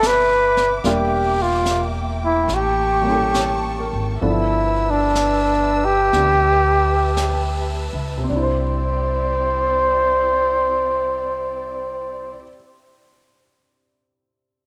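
A moderate spring reverb wraps this tender, late-night jazz ballad excerpt in C major, where a breathy, up-front flugelhorn with light vibrato and scooped notes carries the melody over a dark baby grand piano with audible action noise, lush bowed strings, a woody, growly pizzicato upright bass and a brushed kit, the tempo slowing between 0.8 and 8.3 seconds as the chords move from Cmaj9 through A7b9 and G13 to Cadd9, with the drums stopping at 9.2 seconds and the piano alone from 12.4 to 14.7 seconds.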